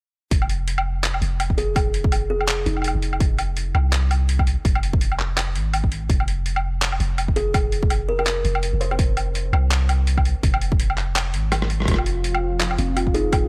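A deep, mellow 808-style sine bass sits up front on an F power chord, anchoring this spacious, tense half-time drum and bass excerpt in F minor at 166 BPM with a swung sixteenth feel. A heavy electronic kick, re-recorded in a large room, pairs with a gritty, pitched-down sampler-style kit of handclaps, hi-hat, rim click and woodblock, while a woody, airy kalimba melody with digital delay drifts in from 1.6 seconds. After a drum fill at 11.5 seconds, a moody detuned analog pad with chorus and sidechain pumping arrives at 11.9 seconds alongside smooth, delayed kalimba arpeggios, all in a dry mix.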